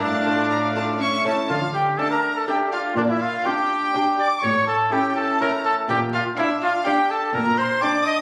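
A baroque-style concerto movement in D minor, cut from a longer piece, moves at 123 BPM in a stormy, dramatic 3/4, with a bright solo trumpet up front carrying the melody over an intense, clear violin section and a second violin line that sounds rich and distant. Delicate fingerpicked lute with gut strings, a smooth viola section in the background and a bowed cello bass fill out the accompaniment, with the cellos dropping out at 7.7 s while the rest play on to 8.2 s. The sound sits in a wet recital-hall reverb, heard as if captured on a phone in the room, with club reverb, vinyl crackle and compression layered on top.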